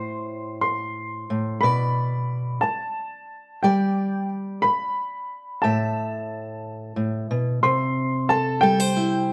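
A worn, woody upright piano, slightly detuned and up front, carries a high melody through this haunting, intimate acoustic folk fragment in a straight 6/8. A fingerpicked steel-string guitar with a warm concert tone sits just as close beside it, supplying the accompaniment from start to finish. Moderate studio reverb gives the pair some space as the harmony moves from A minor through B minor and G, before a change of section at 7.6 seconds.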